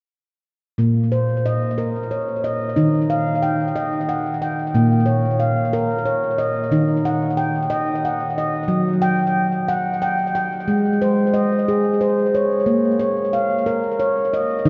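A lone handpan opens at 0.8 seconds with ringing, stainless-steel arpeggios, struck by the fingertips and placed up front with a delay trailing each note. This is a hypnotic, meditative world piece in Bb minor at a slow 61 BPM in a straight 6/8, tuned slightly flat to A4 = 437 Hz, with chords moving from Bbm to Ebm and later through Ebm/Gb and Ab before settling back on Bbm. A vast cathedral reverb with a long decay and a dulled top end surrounds the instrument, and the passage, cut from a longer piece, closes at 14.7 seconds.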